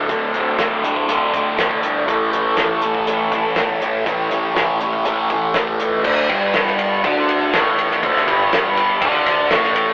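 A rough, telephone-thin rehearsal-room sound with a small wet reverb frames this hypnotic, kaleidoscopic psychedelic rock fragment, where a bright, double-tracked fuzz guitar riff with phaser sits up front beside a dry 70s drum kit with a fat snare and tight kick, while a round, overdriven picked bass line and a lush, woody bowed string section with vibrato holding sustained chords sit in the background until the strings drop out at 6.0 seconds.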